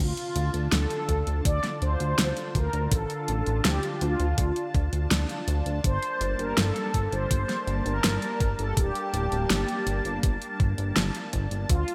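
A nocturnal, cinematic synthwave passage in D minor opens with a mellow synth brass melody over a lush unison pad and a chorused synth bass, all sounding from the very start. The brass lead is round and dark-edged, built from detuned sawtooth tones with a touch of ring modulation, filter sweep, chorus and digital delay. Beneath it, the thick, detuned pad sustains chords with a slow attack, colored by chorus, phaser and sidechain pumping, while the glossy, up-front bass holds the low end with a plucky filter and pulse-width movement. A pop drum kit enters at 0.2 seconds with a fat, overdriven snare and warm hi-hats treated with gated reverb, and a thumpy, tape-toned electronic kick joins at 1.1 seconds. At a steady 82 BPM in straight 4/4, the harmony moves from Dm to Gmadd9 at 5.8 seconds, all within bright 1980s-style digital production and light reverb in this short cut from a longer piece.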